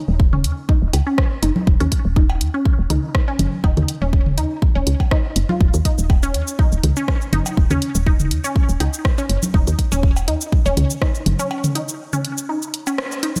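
A woody, round FM bass with sidechain pumping sits up front alongside a punchy, tape-warm electronic kick, driving this quirky, cool minimal techno cut from a longer piece with a light swing on the sixteenths. Above them, a juicy, squelchy blip pluck with a resonant filter, phaser and digital delay plays a riff, while electronic toms, cowbell and congas mix with a house kit of hi-hat, rim click and shaker, the drums re-recorded in a large room yet the whole kept fairly dry. The bass and kick drop out just after 11 seconds for a break, leaving the pluck and percussion, with a band accent at 13.0 seconds.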